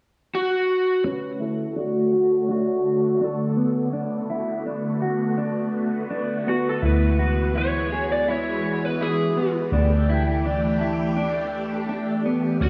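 An overdriven slide guitar carries the melody from the start, its dark, gritty tone softened by a low-pass filter and trailed by tape echo in this floating, blissful dream pop excerpt. At 1.0 seconds a swirling string machine with a phaser and ensemble chorus spreads sustained chords beneath it, while a mellow, clean electric guitar traces arpeggios through lush chorus, and a filter sweep runs over the Dmaj7, Bm7/D, Eadd9/D and A7sus4/D changes. A round, foam-muted electric bass arrives up front at 6.8 seconds, all of it set in a long, wet reverb.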